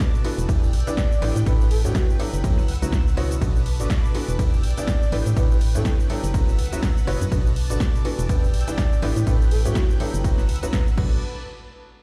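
Energetic yet bittersweet, this piano house excerpt at 123 BPM in B minor swings its 16ths over a cycling Em7–A9sus4–F#7sus4–Bm7 progression, with a woody upright piano riff carrying audible action noise and dub echo, a punchy, tape-warm electronic kick up front, a layered house kit of snare, hi-hat, ride, crash and cabasa, a hollow, organ-like FM bass entering at 0.4 seconds, shimmering vintage string-machine violin chords that pump with the sidechain alongside the piano and bass, and a breathy flute-like synth lead with vibrato drifting in the background from 0.9 seconds, all heard as if played on a big sound system in a bare room with large studio reverb.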